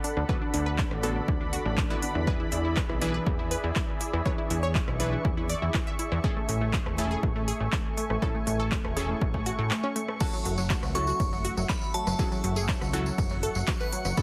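Heavily compressed, with a radio-like squeeze and light reverb, this emotional, driving progressive house excerpt sets a thick, warbling pad, a punchy detuned pluck playing echoing arpeggios and a phased, bright pluck playing stabs in the background to a sidechain pump, above a funky sawtooth bass and an overdriven, up-front kick. A big-room dance kit, re-recorded in a large room, adds crisp hats, handclaps, ride, crash and rim clicks as the chords move from D6 through E7 and Amaj7 to F#m7. At 10.2 seconds a crystalline FM bell melody and a jingly tambourine join, followed at 11.3 seconds by a reversed, dreamy granular texture swelling in the distance.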